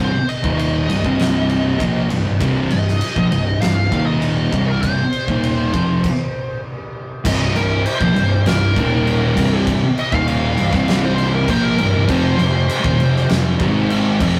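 Stoner and doom metal in C minor at 99 BPM, this hypnotic, ominous excerpt pairs two thick fuzz guitars grinding out the riff, one dark and up front and the other sitting behind it, with a growly, overdriven fuzz bass and an oversized low-tuned drum kit of boomy kick, fat snare, dark crash and ride cymbals in a pumping room, all in a rough rehearsal-room sound, as a wah-soaked fuzz lead guitar with digital delay carries the melody, breaks off for a stop at 6.0 seconds and then takes a solo from 7.3 seconds over chords moving from Cm through Eb5, F5 and Ab5.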